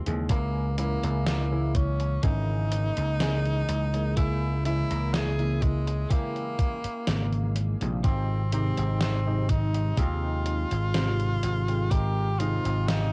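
A slow, straight 4/4 pulse comes from a thumpy electronic kick sitting up front and a gated 80s drum machine whose hi-hat and snare carry gated reverb and a tape-worn, small-room character, while a punchy vintage slap bass with tube saturation anchors the low end. Warbling lo-fi synth keys, mellow and nostalgic with subtle chorus, rest on a single Abmaj7 chord beneath a bright tenor saxophone that sings with vibrato and tape echo from 0.3 seconds, joined by a clean, twangy electric guitar riff tucked in the background under lush chorus. This woozy, faded vaporwave passage, cut from a longer piece, sounds like a home cassette recording with light reverb.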